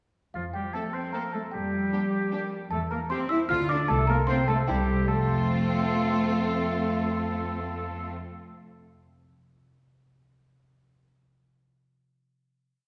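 A trough xylophone struck with soft rubber mallets carries the tune in this complete, magical and playful film cue, its woody, dry tone sitting forward over a concert harp's ringing, spread broken chords, which linger until 8.9 s. In F major at 152 BPM in 3/4, a clear oboe, a mellow French horn section and a distant cello section double the tune at the octave, while a lush double bass section supplies pizzicato and sustained bass, and violin and viola sections add after-beat chords with vibrato. The whole ensemble sits back in a scoring-stage reverb, moving from F through Gm7/F, C/E and C7 to a final F chord at 5.1 s.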